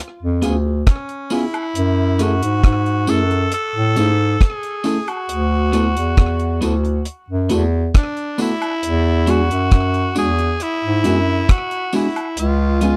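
Smooth and bittersweet, this lovers rock reggae excerpt sits at a relaxed 68 BPM in F# minor, with a dry, close 1970s-style studio sound and little reverb. A smooth-topped bass clarinet carries the bass line up front from 0.2 seconds, joined by a tight, deep drum kit of hi-hat, kick and rim click, a mellow tine electric piano with slapback echo, picked guitar stabs slightly broken up through a small old amp, and a faint, saturated layer of tambourine and woodblock. From 0.9 seconds a raspy, forceful tenor saxophone takes the melody with light vibrato and tape echo over chords moving from C#7 through F#m7, D6 and E9.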